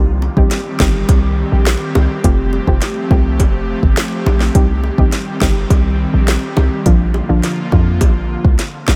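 Light reverb gives this hypnotic, bouncy dancehall excerpt a gentle sense of space, with an airy, breathy pad holding warbling, detuned chords and a soft, round pluck sitting darkly in the background, both carrying chorus and sidechain pumping through a Cm, Fadd9 and Bb progression. Up front, a punchy, tight 808-style bass with a fast attack sits alongside an electronic afro-pop drum kit of deep kick, sharp snare and smooth hi-hats, which enters at 0.4 seconds. High-tuned acoustic bongos tap in the background from 0.2 seconds, and the kit closes the clip with a drum fill at 8.6 seconds.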